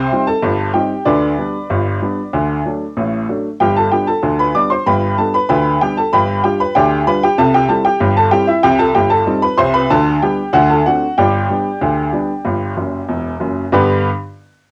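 Ragtime piano in G major at 95 BPM in a straight 2/4, cheerful and playful, with a clear, woody upright piano playing solo across the full 14.1 seconds, its worn, slightly detuned tone sitting up front with the grain of cassette tape. Cut from a longer piece, the passage moves from Cm through G/D, D and G to G7 and C before circling back to a D7 and G cadence, with a short piano fill at 12.8 seconds. The home recording carries a modest booth ambience, and the piano is tuned to A4 = 444 Hz.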